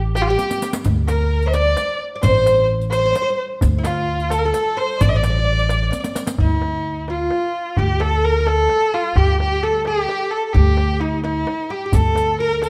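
A biting, bright kamancheh leads this hypnotic, longing Persian modal piece in D dastgah shur, its bowed line shaped with vibrato and portamento over a 6/8 metre at 87 BPM. Up front, pizzicato upright bass gives a dark, woody footing, while a plectrum-plucked fretless oud and a deep, soft-handed tombak sit further back, and a very quiet studio violin section adds a rich bowed layer until about 6.1 s. Riq jingles glint through the first half and return at 11.9 s, with short drum fills near the start and at the turn into the second section, set in a moderate recital-hall reverb.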